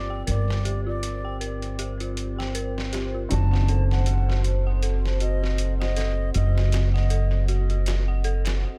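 Steeped in echo-heavy studio reverb, this smoky, dark trip hop excerpt at 79 BPM with a swung 16th feel moves from Gm11 to D7b9/F#, as a woody, thumpy pizzicato upright bass sits up front beneath a gritty, overdriven, pitched-down sampler-style kit of hi-hat and snare entering at 0.3 seconds, while an airy, straight-toned baroque flute carries the tongued melody with tape echo until 7.4 seconds over a felt-muted upright piano in the background, a deep, evolving detuned analog pad with chorus, and eerie, inharmonic FM bell arpeggios running through chorus, tremolo, a low-pass filter and tape echo, before a break at 8.6 seconds.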